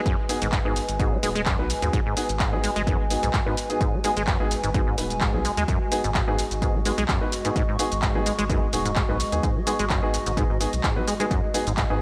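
Hypnotic and trippy, this acid house passage, cut from a longer piece, rides a 128 BPM groove in 4/4 with a light 16th-note swing, resting on a single G#m7 chord in G# minor for its 12 seconds. A punchy electronic kick and an analog drum machine carrying handclaps, hi-hat and shaker enter at 0.1 s, both re-recorded in a large room. Also from 0.1 s, a squelchy, resonant sawtooth acid bass plays a bright, plucky riff through tube saturation, analog chorus and delay, while a round, deep analog bass joins at 0.4 s with sidechain pumping. From the start, a dark baby grand piano adds mellow, intimate stabs with audible action noise and analog delay. Behind it all sit two background pads: a moody, detuned analog pad with chorus, phaser and sidechain pumping, and a warbling, lo-fi, nostalgic tape-like pad with chorus, built-in reverb and the same pumping. Light digital ambience gives the mix a subtle sense of space.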